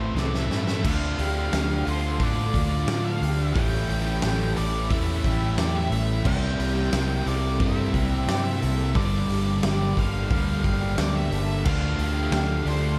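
A straight 4/4 rock pulse in a brooding, hazy shoegaze and dream pop vein opens with guitars and bass sounding from the start, joined by a drum fill at 0.2 s from a huge arena kit, its fat snare and kick sitting up front beside a round, foam-muted fingered bass, while background guitars build a thick bed: a dark fuzz riff with analog chorus, a biting overdriven riff with reverse reverb, and a bright, double-tracked overdriven riff, all under a shimmering, octave-doubled twelve-string acoustic playing arpeggios with ensemble chorus and slapback echo, and an octave-fuzz lead guitar carrying the melody with slapback echo, in a lightly reverberant space.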